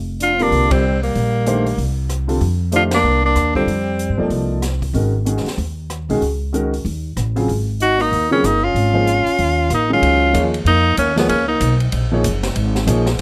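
This swung modal jazz excerpt has a light overall reverb and a searching, intense mood. A bright, punchy tenor saxophone carries the melody with forceful vibrato and scooped notes, set in a plate reverb, while a mellow trombone plays a smooth-topped second line beneath it. The horns drop out at 4.5 seconds and return at 7.8 seconds, leaving the rhythm section exposed in between. A pizzicato upright bass with woody steel strings sits close, and an intimate concert grand piano with deep bass and audible action noise comps through the sus chords. The open drum kit sounds like a small room, with dark cymbals on ride and hi-hat, a high-tuned snare and rim clicks, and a boomy kick, and the band hits shared accents early on. At 10.0 seconds the harmony settles into a new modal centre.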